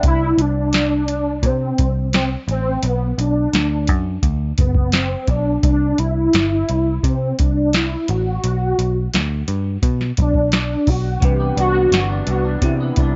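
Worn, warbling cassette tape gives this dry, dulled excerpt of sunny, laid-back indie bedroom pop a hazy, lo-fi cast. Up front, a velvety, detuned sawtooth synth lead carries the melody with chorus, vibrato and slapback echo over a soft analog rhythm box with deep kick, crisp snare and metallic hats, and a dark, round, foam-muted picked bass. A twangy, slightly broken-up electric guitar with warbly analog chorus and a mellow, clean tine electric piano in the background flicker in at the very start and return at 11.2 s, as the chords move from Csus2 through Bm, C and a rootless Gmaj7/B to Cmaj9.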